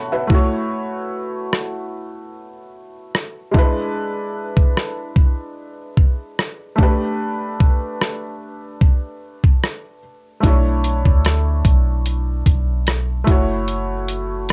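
A lightly swung 74 BPM groove in 4/4 comes from a gritty, compressed sampler-style soul drum kit with a thumpy kick, rim clicks and hi-hats, which drop out from 7.2 to 10.4 seconds. This longing, moody contemporary R&B excerpt in B minor is carried by a warm, present baby grand piano with short sustain, moving through chords from F#m7 and E7 to A9sus4 and Bm11. A deep, round, dark 808-style bass enters at 10.4 seconds, while the dry home cassette recording gives the piano and drums a tape-worn character.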